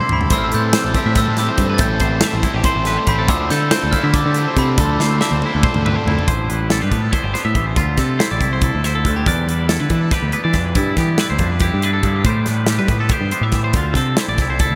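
A drum fill and a ringing, bell-like glockenspiel melody with delay open this restless, intricate slice of math rock and midwest emo in A minor, racing at 281 BPM in 7/8, where two clean, twangy electric guitars (one playing chords under subtle chorus, the other spinning delayed arpeggios in the background) sit over a growling, overdriven bass and a punchy, polished studio kit up front, while a double-tracked, gritty guitar riff joins until 6.3 seconds, the glockenspiel drops out at 5.8 seconds, and the harmony moves through Am7, Dm9, Em7 and G13 inside a dreamy mix soaked in huge reverb.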